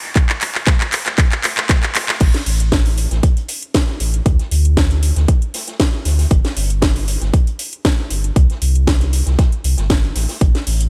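Late-night and smooth, this deep house excerpt runs at 117 BPM in 4/4 with a light 16th-note swing, opening on a short build-up where a punchy, tape-tinged electronic kick and a house kit of cracking snare, handclaps, crash and metallic hats drive a drum fill, backed very quietly by a natural-sounding acoustic kit with a rolled-off top. At 2.2 seconds the drop arrives as a deep, sine-and-triangle sub bass with an added octave enters between G1 and D2, full and sustained with sidechain pumping, sitting up front alongside the drums. Light reverb rounds out the mix, while the electronic drums carry the closeness of being re-recorded in a small room.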